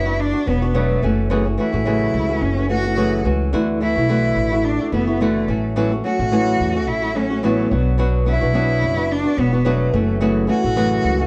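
Acoustic pop with a heartfelt, sunny mood and a light sixteenth-note swing, this brief passage cut from a longer piece moves through Bm, F#m7, Dadd9 and A6 before returning to Bm. A rich, bowed cello carries the melody with vibrato and a plate reverb, while a dark, fingerpicked flamenco guitar accompanies and a woody, thumpy upright bass on gut strings plays pizzicato underneath. The whole recording sits in a moderate studio room and has the worn character of old cassette tape, with warbly pitch drift.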